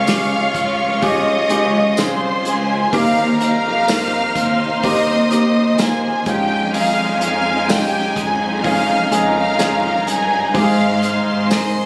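A dark, woody violin section carries the melody up front with vibrato and a touch of digital delay in this melancholic, emotional pop ballad excerpt at 63 BPM, backed by a smooth-topped symphonic violin line in the background, a soft felt-muted upright piano with audible action noise, very quiet sustained chords from a distant string section, faint bright picked arpeggios on a clean electric guitar, a rich, focused cello section on bass, an acoustic drum kit played with bundle sticks and a jingly tambourine, all moving through Dbmaj7, Eb6, Dbadd9/F and Ab and captured on a phone in the room with club reverb.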